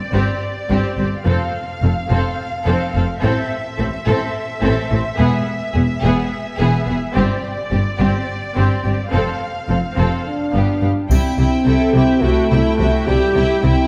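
A lush violin melody opens this dark, epic orchestral film cue in 7/8, joined at once by a second violin line, distant violas, and a rich foundation of bowed cellos and intense double basses, all with vibrato, through a long build-up. At 10.3 seconds a mellow French horn section enters with soft-attack sustained chords, and at 11.1 seconds the harmony lands on C as a taiko ensemble hits with hard sticks alongside a faint triangle in the background, both stopping at 12.2 seconds. The orchestra sits in a moderate concert hall reverb, and the passage is cut from a longer piece.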